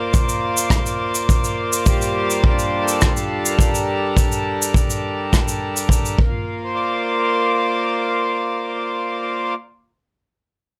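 A straight 4/4 pulse at 104 BPM opens this pastoral, hopeful folktronica piece, with a punchy acoustic kick drum sitting up front from 0.1 seconds alongside a softer shaker and rim click, both played with brushes in a small, pumping room. The shaker and rim click have a rolled-off top that keeps them gentle beneath the kick. A reedy, breathing pedal harmonium holds sustained chords in Bb major from the start, sitting up front with a mellow glow. The harmony moves from Bb to Gm7, touches a bare Bb5 as the drums fall away between 6.2 and 6.3 seconds, then settles back on Bb as the harmonium carries on alone until 9.5 seconds. Light reverb lends the whole a soft sense of space, and the passage is cut from a longer piece.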